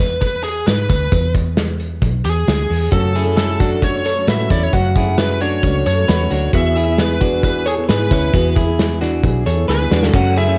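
A biting, overdriven lead guitar carries the melody from the first beat, its bright picked tone colored by cassette tape in this nostalgic, bright excerpt of jangly indie pop at 133 BPM in 4/4 with a straight feel. Underneath, a vintage muted fingered electric bass sounds dark, round and punchy, while a loose indie drum kit sits up front with a pumping room sound, dark cymbals, a medium-tuned snare and a punchy kick under a rolled-off top. At 2.9 seconds, as the chords move from E to F#m, a clean, compressed semi-hollow electric guitar enters with picked arpeggios, alongside a fingerpicked plugged-in steel-string acoustic guitar whose full-bodied jumbo tone stays in the background. The harmony returns to E at 6.5 seconds, and a drum fill closes the passage at 9.7 seconds. Light studio reverb and the character of a home cassette recording give the whole excerpt a homespun, fond glow.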